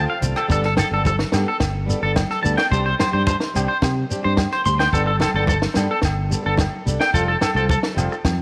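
A twangy, slightly broken-up electric guitar sits up front, picking high arpeggios through a tape echo in this carefree highlife guitar band excerpt at 108 BPM in a straight 4/4, set in G mixolydian. Beneath it, a boxy fingerpicked acoustic guitar plays swing-style accompaniment, while a punchy fingered electric bass anchors the low end. From 0.2 seconds a compact cocktail drum kit enters, dry and natural with a high-tuned snare, tight kick, hi-hat and rim click, joined by a grainy shekere and very quiet congas with a thick-skinned, vintage tone. Ringing agogo bells arrive at 0.4 seconds and sit in the background. The harmony moves from Fadd9 to Gadd9, Csus2 and back through Gadd9 to Fadd9, and a moderate echo chamber reverb gives the whole band a warm, spacious glow.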